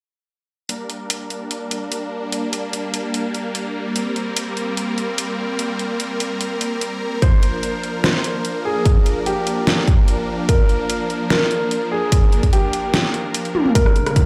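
Heard through a big sound system in a bare room with large studio reverb, this heavy, menacing half-time wobble dubstep excerpt sets huge, detuned supersaw chords, pumping under sidechain and a low-pass filter, against an up-front dubstep drum kit of deep snare, hi-hat, rim click and toms, until at 7.2 s a punchy, layered electronic kick and a warm grand piano melody with digital delay join, the kick briefly dropping out before a drum fill at 13.5 s and a background riser at 13.9 s.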